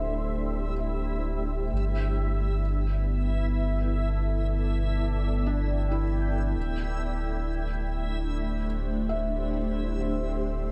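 Hazy and spacious, this free-time ambient excerpt drifts from Dsus2 to G and back as a cloudy, detuned granular pad and a deep, round dub sub bass sit up front, while a muted felt upright piano with audible action noise plays arpeggios in the background through a filter sweep and tape echo, and a reversed, bright backwards swelling texture hovers throughout in a light studio reverb.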